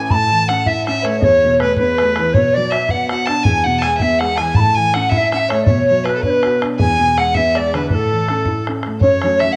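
Celtic folk in the form of a cheerful, lively jig in 6/8, this short excerpt from a longer piece has the homespun feel of a cassette home recording, with light reverb and small room ambience. A wooden flute leads the melody with an airy, bright tone, tongued and expressive with vibrato, and sits at a distance. Beside it a single bowed fiddle plays a second line, up front and focused, its warm sound smoothed at the top and touched by light vibrato. A dark upright piano supplies the accompaniment, mellow, woody and slightly detuned, with audible action noise and an intimate, vintage character. The flute, fiddle and piano share a cassette tape coloring, while a boomy, open bodhran plays from 0.1 s to 9.5 s with a live room sound. The harmony moves through A, Esus4, Bm and E before returning to A, then passes through Bmadd9 and E7 back to A and closes on F#m.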